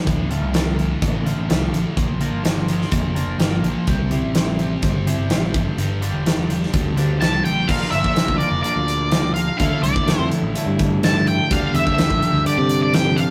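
A crunchy, double-tracked overdriven guitar riff opens this cathartic, angsty quiet-loud alternative rock excerpt at 126 BPM, joined at once by a growly, punchy picked bass and a big-room acoustic drum kit up front with bright cymbals and a medium-tuned snare. A clean, twangy fingered guitar plays arpeggios in the background with slapback echo as the chords move from Dm7 through Bb, C and Gm. At 7.2 seconds a distorted octave-fuzz lead guitar steps up front with a high melody, carrying the piece into a section built on Bb, Dsus2 and G5/D, all captured in a rough rehearsal-room recording with light reverb and tube saturation.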